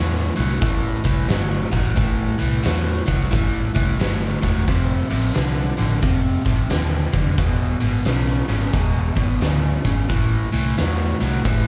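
A dark, overdriven, double-tracked electric guitar riff with slapback echo leads this smoky, gritty blues rock and southern rock power trio excerpt at 89 BPM in A minor with a swung 4/4 feel, moving through Am7, F7 and E7 over a round, punchy, foam-muted fingered bass and a saturated low-tuned drum kit with a boomy kick and fat snare that enters at 0.4 seconds, captured as a live club gig through the venue's PA with a muffled top end.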